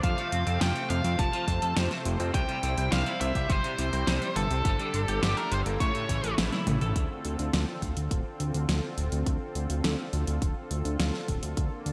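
Synthwave in D minor at 104 BPM, this moody, nocturnal fragment of a longer piece moves in a straight 4/4 under a bright 1980s-style digital sheen and a lush hall reverb. A nasal lead guitar with a parked wah carries the melody up front, its overdriven, picked tone trailed by digital delay until it drops out at 6.3 s. Underneath, a thick, detuned sawtooth pad holds sustained chords with chorus and sidechain pumping, while a fat analog bass with tube saturation and a filter sweep pumps alongside it. Two hollow-body guitars sit in the background, a clean, compressed one picking arpeggios and an overdriven one playing a riff, both bathed in chorus and delay. A punchy layered electronic kick and a pop kit with a fat, gated-reverb snare, warm hats and toms drive the groove, and a drum fill at 6.4 s ushers the harmony from F, C, Gsus2 and A onto a settled Dm7 for the closing stretch.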